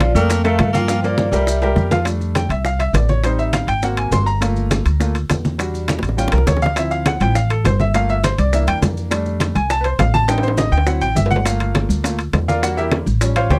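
Sophisticated and lively, this short cut of fast Afro-Cuban jazz at 204 BPM opens with a soft-mallet vibraphone melody and a breathy tenor saxophone second line before both stop at 1.7 seconds. A clear, up-front baby grand piano then solos from 2.1 seconds over a woody, growly pizzicato upright bass, low-tuned congas and round bongos in the background, ringing metal-shell timbales, grainy maracas and several drum fills, all set in a dark production with light reverb.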